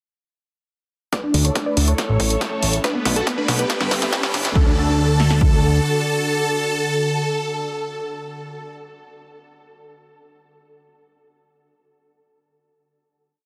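A dense, heavily limited master with light reverb carries this short, euphoric uplifting trance piece in D major at 140 BPM, where a huge, bright supersaw lead with sidechain pumping and tape echo repeats a sixteenth-note riff in thirds and sixths under a filter sweep, doubled by a very quiet, wave-folded unison pluck over a silky, chorused string pad, a fat, tube-saturated off-beat bass, overdriven analog drum-machine kick, snare and hats with a fill, and a faint riser from 2.4 s, building to a final D chord at 4.6 s.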